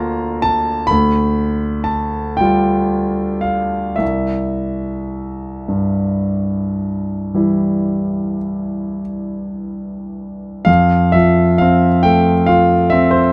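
Dreamy and serene, this brief passage cut from a longer romantic nocturne for solo piano unfolds in a gentle, rubato 12/8 lilt. The concert grand sits intimate and up front, with deep bass, polished tone, long sustain and audible action noise caught by close, detailed microphones in a nearly dry room. Harmonies drift from Bb/D through G7/D to C, and a new section arrives at 10.7 seconds as the music settles onto F.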